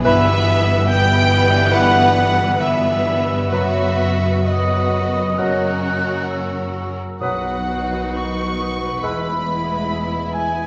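A serene classical orchestra opens together, with the violin section carrying a lush, vibrato-rich melody high above a softer, more distant second violin line, while violas, cellos and double basses bow beneath and a trumpet section adds distant, roomy stabs in the same register as the tune. Clarinet and a pure-toned flute add second lines, the flute floating above the melody, while the bassoon accompanies below. Mellow horn and trombone sections hold very quiet sustained chords and a concert harp rings out arpeggios, all moving with a free, rubato pulse of about 61-72 BPM in B major through a spacious recital-hall reverb. Very quiet timpani struck with hard mallets join only at 7.2 s as the harmony arrives on B, before this fragment of a longer piece settles on E.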